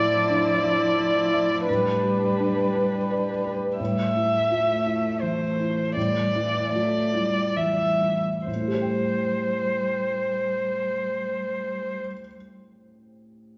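Bathed in the wet, dull-topped reverb of a recital hall, this longing, melancholic fragment of neoclassical piano and strings drifts in rubato 3/4 between 64 and 87 BPM in A minor, easing through its middle, as a veiled solo con sordino violin carries the melody up front over a dark, vibrato-rich cello second line, while a shadowy viola murmurs in the background until 3.5 seconds and a reedy, breathing vintage pedal harmonium until 3.8 seconds, and a felt-muted upright piano, mellow and intimate with audible action noise, supports the harmony from Dmadd9/A and G/A to Am and then Am7 at 8.5 seconds, outlasting the strings, which stop at 12.0 seconds, to close alone at 13.6 seconds.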